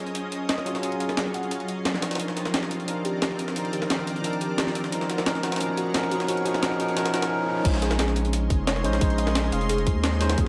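Liquid drum and bass at 176 BPM in a straight 4/4, dreamy and rolling, cut from a longer piece. A bright, clean tine electric piano sits up front with subtle chorus and digital delay, over a shimmering, ethereal pad whose detuned unison chords breathe with sidechain pumping and an octave-up sparkle. Two layers of gritty, pitched-up jungle sampler-style breaks carry the groove: one overdriven with a medium-tuned snare and crash, the other tucked in the background with a high-tuned snare and high-passed hats and room. A soft, harp-like pluck plays dark, ringing arpeggios behind them through chorus and tape echo, while a very quiet electronic riser builds toward the drop. At 7.7 seconds a deep, thick, saturated sub bass and a tight, up-front electronic kick arrive, as the chords move through Ebm11, Cm11 and Abm11 to Bbm11, all set in light digital ambience.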